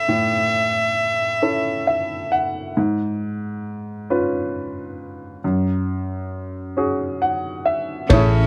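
A clear baby grand piano and a bright, biting cello with light vibrato and an airy bow open this tender, hopeful acoustic folk-pop ballad in a slow 6/8 at 45 BPM. The cello takes a solo with piano fills over A, C#7/G# and F#sus2 in a dry, close sound, until a growly fretless electric bass and a muffled, cloth-damped kit of tight kick and dark ride cymbal arrive at 8.1 seconds, just before this cut from a longer piece ends.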